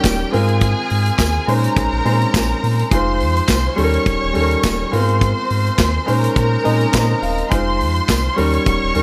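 Light reverb and a small-room ambience frame this glamorous, danceable disco cut, which moves with a gently swung sixteenth-note feel over a looping Ab69, Bbm11, Fm7, Eb7 progression. A deep sine-and-triangle sub bass with octave anchors a punchy modern studio kit of kick, snare, hi-hat and handclaps, while an intimate concert grand piano, with audible action noise, comps up front and slips in a fill at 6.7 seconds. A lush, bowed symphonic violin section adds an intense, vibrato-rich second line, and a jingly tambourine sits in the background until 8.2 seconds.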